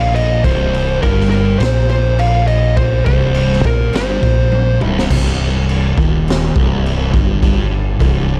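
A raw garage drum kit, up front with a punchy kick, high-tuned snare and gritty, saturated crashes and toms in a bright stone room, drives this heavy, sludgy stoner and doom metal excerpt, where two thick fuzz guitars grind out a low riff over growling overdriven fingered bass, a dark fuzz lead guitar carries the melody with analog delay until 4.8 seconds, and a drum fill at 4.5 seconds shifts the power-chord riff to a C minor chord at 5.1 seconds as one riff guitar drops out, all in a dark, dry production.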